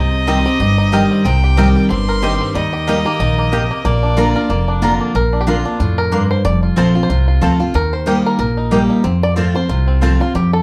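A roomy studio sound heard from a little way back frames this lively, virtuosic bluegrass excerpt in Bb major at 185 BPM with a swung feel, where a full-bodied picked acoustic guitar and a thumpy, up-front upright bass drive the accompaniment, a twangy fingerpicked banjo carries the melody alongside a clear, airy-bowed fiddle until 4.8 seconds, a mellow double-strung mandolin adds stabs, and the banjo takes a solo from 5.1 seconds over chords moving from Cm through Eb and Bb to F.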